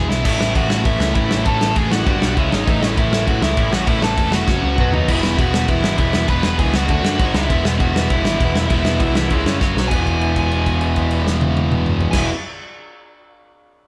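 This rowdy, upbeat punk rock excerpt bursts in with a drum fill as the whole band hits at once, driving a straight 4/4 at 199 BPM in E major. A dark, smooth lead guitar with overdrive carries the melody high above two double-tracked rhythm guitars: a bright, high-gain distorted part and a raw, lo-fi garage part with overdrive grinding out the low riff. Underneath, a growly, punchy picked electric bass with overdrive sits a touch louder than the guitars, while a loose indie drum kit with a tight kick and a medium-tuned snare sits up front, crashing and riding through fills around 4.5 seconds. The chords move restlessly through A, E and a string of colourful passing harmonies before settling back on E at 9.9 seconds, where a long note is held as the band rides it out. A moderate stone room reverb gives the sound the feel of a band playing live in one room.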